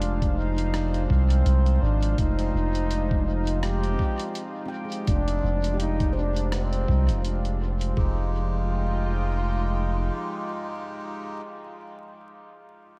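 Hazy and spacious, this ambient dub excerpt at 83 BPM in F dorian drifts on an Fm9 chord. A clear, distant trombone carries the melody with light vibrato and delay over a chorused analog pad with vintage sampler grit, ringing handpan arpeggios, and a deep, round sub bass up front. A muffled, thumpy electronic kick and a tape-warm lo-fi kit of hi-hat and rim click play in a swung 16th feel, and a faint bubbling stepped-filter texture hovers behind them, while a reedy, breathy melodica adds dub-echoed stabs from 2.4 s, all soaked in cathedral reverb and vinyl crackle, with the drums dropping out near 8.0 s.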